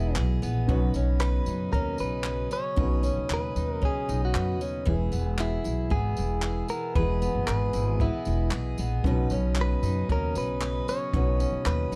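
Acoustic pop with an easy-going, carefree mood, this excerpt sets a clean, picked electric guitar melody, bright and compressed with a scooped tone, over a full-bodied jumbo steel-string acoustic guitar and a dark, slightly detuned upright piano whose action noise sits intimately in the background. A woody pizzicato upright bass stands up front, a chamber organ's principal chorus holds sustained chords with a touch of chiff behind everything, and a compact cocktail kit enters at 0.2 seconds with a dry, punchy kick, handclaps and tambourine. The chords move between E and Badd9 under light reverb in a dark production.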